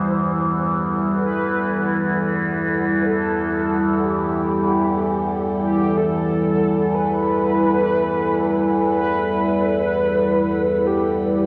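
Dark ambient drone in free time and E minor, desolate and dark, where a resonant, overtone-sweeping drone in the low register, a detuned, ring-modulated analog pad holding a sustained Emadd9 chord, and a round, horn-like synth lead carrying a soft-attack melody with vibrato all sound together from 0.0 to 11.5 seconds, the pad and drone treated with chorus and the lead set in lush chorus, shimmer reverb and diffuse delay, within a dreamy, reverb-soaked plate space in this fragment cut from a longer piece.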